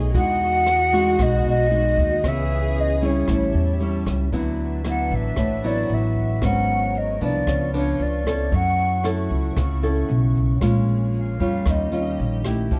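Bossa nova with a romantic, sunny mood, cut from a longer piece in a straight 4/4 feel. A small-sounding, fingerpicked nylon-string guitar and a pizzicato upright bass with a woody, thumpy gut-string tone sit up front, while a jazz brush drum kit in a small room adds hi-hat, rim click and a boomy kick. A mellow concert flute carries the melody with vibrato, an airy tone and a crisp attack, sounding somewhat distant yet expressive. From 4.3 seconds it takes a solo as the harmony moves through chords such as D69 and C#7b9. A lush, smooth-topped violin section plays a bowed second line until 4.1 seconds, and a bowed string section with a reedy, period-style sound holds sustained chords in the background throughout, all within a dark production touched by light reverb.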